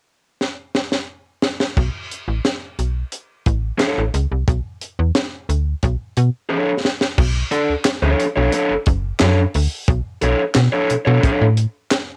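A tight, dry funk drum kit opens with a fill before a snappy FM bass with a metallic, slap-like attack arrives at 1.8 seconds on a Bm9 chord, setting a driving groove in B minor at 89 BPM. At 3.8 seconds a raw, overdriven garage guitar joins, picked and up front. The kit, with its high-tuned snare, bright cymbals and handclaps, adds another fill around 6.5 seconds. The short funky cut has a home-recorded cassette character with light reverb, the tape grit colouring the drums and guitar.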